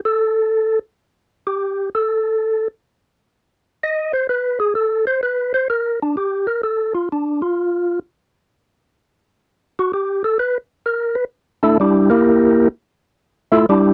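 Jazz with a bluesy, greasy mood, this short passage cut from a longer piece swings its eighth notes in 4/4. A percussive tonewheel organ plays solo throughout, from 0.1 seconds to the end, ranging from G3 up to Eb5. Its tone is soft, mellow and flute-like, sharpened by third-harmonic percussion and a clean key click at the front of each note, while a fast rotary speaker gives it a shimmering motion. The harmony stays open until around 11.3 seconds, when the organ moves through Gm69, Edim/Bb and G7sus2 in quick succession. The sound is a dry, close 1970s-style studio recording with the organ up front and moderate booth ambience around it.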